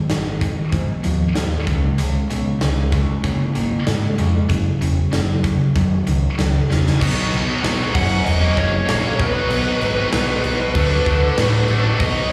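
A tight, bright distorted guitar riff, double-tracked with slapback echo, opens this driving, confident classic rock excerpt at 96 BPM, joined at once by a growling overdriven fingered bass and a big, natural acoustic drum kit with bright cymbals, a punchy kick and a medium-tuned snare, all up front. A drum fill at 6.7 seconds leads into a B major section at 7.0 seconds, and at 8.0 seconds a dark, lo-fi lead guitar through a small cranked amp adds a picked melody with overdrive, slapback echo and analog delay. The sound is that of a live gig heard through the venue's PA, with light reverb, small room ambience and a recital hall reverb around the band.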